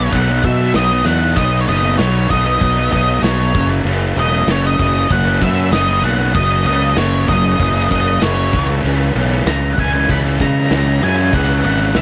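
Opening together, a dark, picked octave-fuzz lead guitar carries the melody high over a double-tracked fuzz guitar riff sitting in the background and a bright, growly fingered bass pushed up front, while a loose indie drum kit with a tight kick, medium-tuned snare and crash joins at 0.1 seconds in a small, pumping room, all moving through B, F# and C#m at 96 BPM in this angsty, dark slice of quiet-loud alternative rock with the dry, saturated grain of a home cassette recording.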